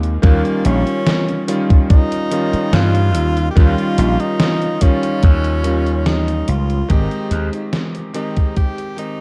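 A straight, unhurried 72 BPM pulse in 4/4 from a thumpy, up-front electronic kick and a gated 80s digital drum machine with gated-reverb snare and hi-hat carries this faded, woozy vaporwave excerpt, where a gritty, overdriven slap bass punches underneath until 7.5 seconds, a bright, clangy electric grand piano with subtle chorus accompanies from Eb9 to Abmaj7, and a close-miked tenor saxophone with vibrato, scooped notes and tape echo sings the melody, all in a dark cassette-tape production that fades out from 4.7 seconds.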